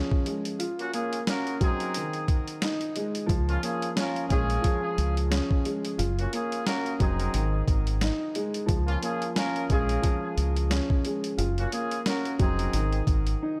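A swung 89 BPM boom-bap hip-hop groove in Db major, built on a gritty, pitched-down, compressed sampler-style drum kit with a thumpy kick and medium-tuned snare, carries a confident, nostalgic mood as a boxy, mellow baby grand piano with short sustain cycles through Db6, Gbmaj7 and Ab chords, a distant, roomy horn section with light vibrato and digital delay adds stabs from 0.8 seconds, and a round, dark fingered electric bass joins up front at 3.3 seconds before a break at 13.4 seconds ends this excerpt.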